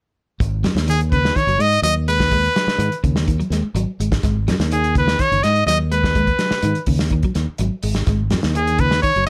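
Light reverb frames this defiant, hypnotic afrobeat excerpt, where a bright trumpet with light vibrato and scooped notes takes the melody up front from 0.9 seconds over a dark, smooth soul drum kit with a tight kick and a warm fingered electric bass, while a slightly broken-up electric guitar picks arpeggios through analog chorus in the background.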